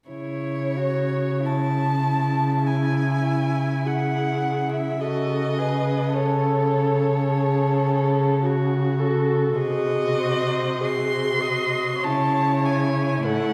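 A veiled, muted first violin sings the melody up front in this elegiac, melancholic slow romantic movement for string quartet in C# minor, moving with rubato at around 43-53 BPM in 4/4, as a second muted violin carries a line with portamento, a dark muted cello holds the bass up front, and a muted viola enters with accompaniment at 2.7 s, all bowed with vibrato and heard from further back in a concert hall whose wet reverb lingers over chords passing from C#m through D#m7b5/C# and Cdim back to C#m in this excerpt cut from a longer piece.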